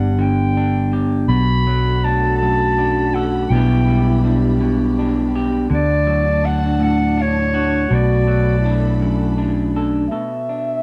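Dark, intimate and softly roomy, this reflective acoustic folk-pop ballad in a straight 6/8 sets a distant, classical-style clarinet melody over a mellow French horn second line with slapback echo, a slightly broken-up electric guitar through a small old amp, ringing metallic vibraphone arpeggios played dry and close, and a round, punchy fingered electric bass up front, while a distant bowed string section with portamento slips in at 1.3 seconds with sustained chords.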